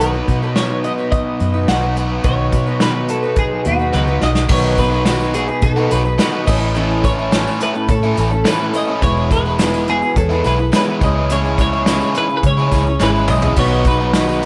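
A chiming twelve-string electric guitar carries the melody from the start, its clean, twangy tone washed in harmonic tremolo, plate reverb and digital delay, over a shimmering, octave-doubled picked twelve-string acoustic guitar. This hopeful, open-road slice of folk rock and heartland rock moves at 106 BPM in a straight 4/4, anchored by a round, foam-muted fingered bass sitting up front, a double-tracked overdriven electric guitar riff, and a distant, roomy brush kit with a punchy kick. A mellow tonewheel organ holds very quiet, flute-like chords through a slow rotary speaker. After a drum fill, a dark grand piano and a jingly tambourine join at 4.5 seconds, both tucked low in the mix. The chords move from B through A, E and C#m before returning to B at 13.6 seconds, and a moderate studio reverb gives the whole band a natural sense of space.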